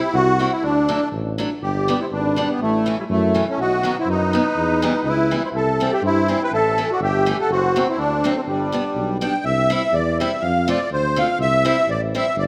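A bouncy 2/4 pulse at 123 BPM, with a light swing on the eighth notes, drives this jolly alpine folk dance-band cut, taken from a longer piece and set in G major before moving to C major at 9.4 seconds. Up front, a reedy musette accordion carries the melody with a shimmering, dark and smooth tone. Beneath it, a mellow tuba holds the bass line with light vibrato in a classical manner, sitting forward in the mix. A picked acoustic archtop guitar gives boxy, warm accompaniment, complete with a touch of finger squeak. A distant trumpet adds a mellow second line in the background from 0.6 to 9.2 seconds, its classical style and gentle vibrato blurred by the roomy recital-hall reverb that colours the whole recording.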